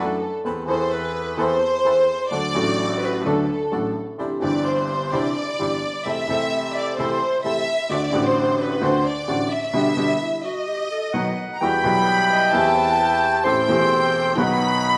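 This dramatic, sultry tango fragment opens with a rich chamber violin section carrying a featured second line, its bowed ensemble tone focused and full of vibrato. Beneath it, a clear upright piano accompaniment sounds woody, worn and slightly detuned, with long sustain. Low in the background, a dark bandoneon adds stabs throughout, while a smooth, classical-style clarinet slips in briefly and returns later. The rubato feel lets the phrasing stretch, and the band hits a shared accent at 9.7 s before a bright, airy, reedy bandoneon melody steps up front at 11.1 s, ahead of a new section at 11.6 s. The group sounds as if it is playing live together in a stone room with a wet reverb.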